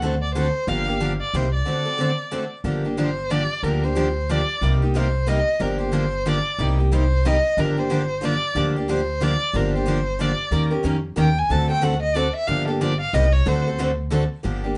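A rich, bowed violin sits up front in this fiery, virtuosic excerpt of jazz manouche in a swinging three-time feel, singing with vibrato and expressive portamento before taking a solo from 2.7 seconds. Two picked steel-string acoustic guitars carry the accompaniment throughout: the more prominent one is a bright, full-bodied jumbo with fresh strings and audible finger squeak, while the second, a concert guitar, is also bright but sits further back. An upright bass, plucked on steel strings, provides a woody, thumpy foundation up front. The harmony circles through minor-seventh and dominant-seventh chords, with a brief turn to Eb7 before settling back home. The band plays live together in one room with moderate studio ambience and a top end that stays gently rolled off, and the passage is cut from a longer piece, ending at 14.8 seconds.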